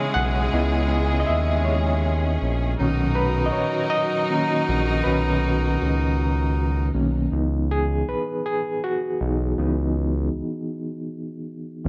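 A slow, swaying 6/8 pulse at 53 BPM (dotted quarters) carries this sultry, yearning R&B fragment in C# dorian, moving from C#m9 to Bmaj7 and back to C#m9. An overdriven, barky reed electric piano with fast tremolo, heard through a combo amp, solos up front over a smooth sawtooth-and-triangle synth bass, while lush bowed strings hold sustained chords and a distant, roomy horn section adds loose stabs. The strings and horns fall away by 7.3 s, leaving the gritty electric piano and bass to carry on under light reverb.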